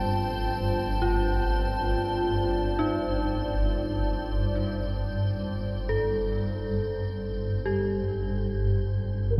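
In free time, this ominous, cavernous ambient fragment rests on a single Fadd9/G chord, with a swarming, granular drone up front in the low register and a deep, moody analog pad holding sustained chords with chorus and shimmer reverb. An eerie, inharmonic FM bell plays warbling arpeggios through tape echo, while a faint icy, crystalline glass pad hovers on one high note. A horn-like, round synth lead with vibrato appears only at 9.3 s, just as the cut ends, and the whole mix sits in a huge, wet reverb with a dark production.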